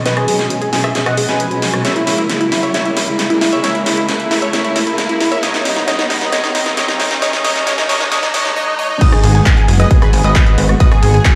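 In a driving straight 4/4 at 134 BPM, this emotional uplifting trance excerpt in G# minor builds for 9.0 seconds as a dark, bowed chamber string section holds sidechain-pumped chords beneath a detuned, airy supersaw stab melody with a sweeping low-pass filter and tape echo, while a big-room drum kit with a huge snare, handclaps, hats, rim click and crash runs a fill and a background riser and swell climb, until the drop at 9.0 seconds brings in a punchy layered kick, a funky sawtooth analog bass and a lush background unison pluck, all in a moderate hall reverb heard through a big system in a bare stone room.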